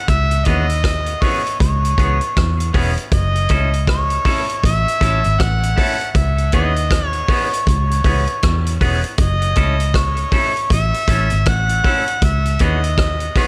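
Light reverb and a small-room ambience frame this meditative, serious slice of roots reggae at 79 BPM in 4/4, with a swung sixteenth-note feel in F# dorian as the chords alternate between C#m7 and F#m7. An up-front mellow harmonica carries the melody with scooped notes and tape echo, over a dark, round, foam-muted fingered bass and a vintage kit of hi-hat, rim click and a punchy kick with a rolled-off top. From 0.5 s a bright, twangy clean electric guitar adds picked accompaniment, also touched with tape echo, in this passage cut from a longer piece.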